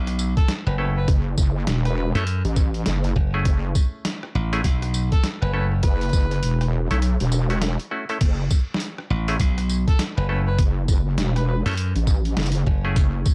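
A swung 4/4 groove at 101 BPM drives this funky, gritty glitch hop piece in F# minor, cut from a longer track and resting on an F#m9 chord. An up-front, overdriven electronic kick thumps, pitched down and sampler-style, and it briefly drops out between 7.0 and 8.2 seconds, while a compressed boom bap kit adds crash, hi-hat, rim click, a high-tuned snare and tambourine under its own overdrive and studio reverb. Two basses share the low end: a bright, punchy, glassy slap bass and a heavy, detuned wobble bass thickened with chorus and tube saturation. A hollow, nasal clav plays stabs through a combo amp with sidechain pumping and dub echo. Over it, a mellow harmonica carries a jazz-style solo with light vibrato and scooped notes, roughened by vintage 12-bit sampler grit and dub echo, all within a dark digital ambience.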